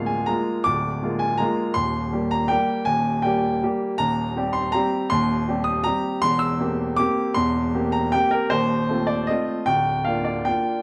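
A clear, open baby grand piano plays alone from the first moment, with a sparkling, elegant classical waltz in three that leans into rubato and uneven beats. Sitting up front in close, detailed sound, it ranges from the deep bass to the upper register, moving through a progression from Bb7/D toward F7/Eb and settling on Bb/D at 9.7 seconds. A moderate recital hall reverb surrounds this short section cut from a longer piece.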